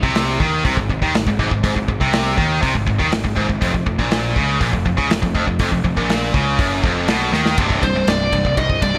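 Relentless and epic, this heavy metal fragment at 121 BPM drives a bright, double-tracked distorted guitar riff over a growly fuzz bass and a dark, smooth acoustic drum kit with a tight kick and gated reverb, until a drum fill at 7.3 seconds opens the way for a warm, high-gain lead guitar solo entering at 7.8 seconds, framed by light small-room ambience and bright 1980s-style digital production.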